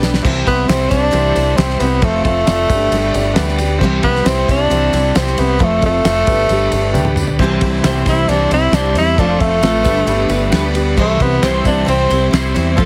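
A breathy, vibrato-laden tenor saxophone solos up front over a hopeful, jangly folk rock and heartland rock excerpt, backed by a round, deep dub fingered bass, a damped 70s drum kit with a fat snare and dark cymbals, bright picked acoustic guitar, a very quiet clear grand piano adding brief fills around 2.9 and 6.5 seconds, a faint reedy tonewheel organ with slow rotary, jingly tambourine, and a dark clean electric guitar riff with ensemble chorus that returns at 7.4 seconds, all cycling through C, F and G with heavily compressed radio sound in a small room.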